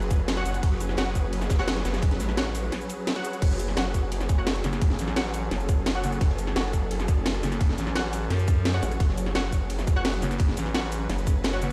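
Heard as if through a big sound system in a bare stone room, this short, aggressive cut of dark technical drum and bass pits an up-front overdriven electronic kick, a layered kit with cracking snare and bright hats, and a very quiet, gritty breakbeat kit against a wobbling, detuned growl bass with sidechain pumping, a swarming granular drone on sustained F# minor chords, bold ring-modulated orchestra-hit-like stabs with tape echo, and a thick FM growl bass that joins at 4.6 seconds after a brief break at 2.7 seconds.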